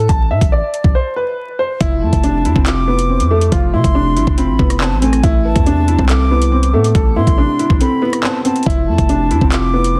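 Dense and heavily limited, this drill excerpt sits in vinyl crackle, light reverb and a small room ambience, setting a menacing, cold mood at 140 BPM in a half-time 4/4 feel. Up front, a worn, boxy baby grand piano carries the melody through tape echo, while a punchy, heavy 808-style bass with a sine body, a noise layer and a fast, decaying attack anchors the low end. The electronic drill kit brings a knocking kick, metallic hats, handclaps and rim clicks, roughened by vintage 12-bit sampler grit. At 1.8 seconds a felt-muted upright piano joins as accompaniment, soft, dark and intimate with audible action noise and short sustain. At 2.0 seconds a concert flute adds an airy second line with vibrato and lifted highs, also through tape echo, as the harmony moves between Amadd9 and Fmaj7 and two brief breaks interrupt the groove.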